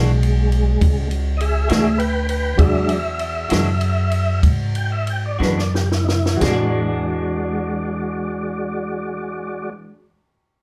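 A tonewheel organ solo with key click, chorus vibrato and a fast rotary speaker opens this rollicking, gritty slow blues in 12/8 and E mixolydian at 58-68 BPM, slowing down from 1.4 seconds over woody, thumpy pizzicato upright bass on gut strings, a picked clean electric guitar with harmonic tremolo, a smooth vintage grand piano in the background, and a dry compact cocktail drum kit with dark cymbals, high-tuned snare and tight kick that plays a fill from 5.4 seconds and stops at 6.6 seconds, the band sharing one room with light reverb in a passage cut from a longer piece.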